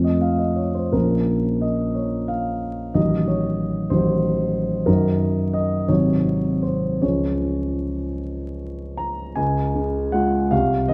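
A dark, vintage-toned recording with vinyl crackle places a solo concert grand up front in a moderate concert hall reverb. This short excerpt from a longer romantic character piece is bittersweet and passionate, moving in a rubato 6/8 at roughly 51-65 BPM in dotted quarters. The piano sounds warm and intimate, with a deep bass, a smooth tone and its action noise audible, spanning Ab1 to Bb5. The harmony passes from F through Bb minor to an A diminished seventh at 3.0 s, then settles into Db major from 4.9 s by way of Eb minor over Gb and Ab7, arriving on Db at 7.0 s. A new section opens at 9.4 s just before the clip ends at 10.9 s.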